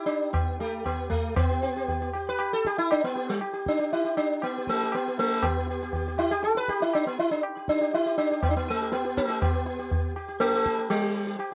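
A straight four-beat pulse carries this Hindustani classical passage, and the pace gradually quickens across its 11.5 seconds. The sitar sets the meditative, devotional mood from the first instant, playing the melody in raga bhupali between G3 and B4 with a plectrum-plucked, buzzing tone that shimmers over its sympathetic strings. High-tuned tabla joins at 0.1 seconds, ringing and close, sitting a little beneath the sitar, which stays up front. After a brief opening phrase, the music moves into a longer second section at 1.4 seconds that runs to the end of this cut from a longer piece. The sound is dry and intimate, like a close 1970s-style studio recording with a touch of small-room ambience.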